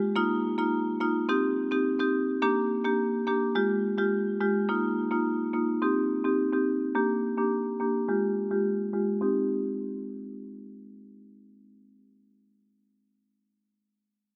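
A straight 4/4 dancehall pulse at 106 BPM underpins this tough, hypnotic fragment in C minor, carried entirely by a solo marimba played with medium hard mallets from 0.2 to 12.9 seconds. Sitting up front with a warm tone and a low-pass filter that sweeps through the opening passage until 9.2 seconds, the marimba cycles twice through Bbsus4, Cm, Gm and Fmadd9 before settling on Cm for a brief closing section. A lush hall reverb and a dark production wrap the sound in a moody haze.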